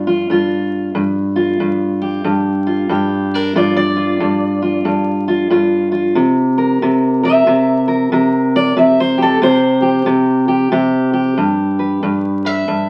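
Through the crackle and muffled top end of a very old 78 rpm record, with a wet studio reverb around it, this short excerpt of laid-back, soulful acoustic country blues at 92 BPM swings in 4/4 as a lone fingerpicked steel-string dreadnought guitar, woody and up front with old strings, plays solo across all 12.9 seconds, moving from G7 to C7 at 6.2 seconds and settling on G at 11.4 seconds.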